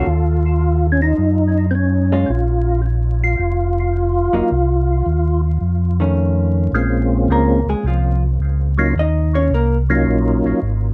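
Smoky and late-night, this soul jazz organ trio piece in Bb minor swings easily at 108 BPM in 4/4, with a dark production carrying light reverb and a layer of vinyl crackle. A mellow tonewheel organ holds down the bass line, its round tone turning through a slow rotary speaker and chorus vibrato. Up front, a second tonewheel organ with third-harmonic percussion carries the melody, its clipped, clean attack also spun by the slow rotary and chorus vibrato and trailed by plate reverb and analog delay. A vintage hollow-body electric guitar, picked and compressed, comps alongside with plate reverb until it steps forward for a solo when the second section begins at 6.7 seconds, then falls silent at 9.8 seconds. Chords such as Ebm7, Cmadd11 and Faug7 color the harmony beneath this short passage cut from a longer performance.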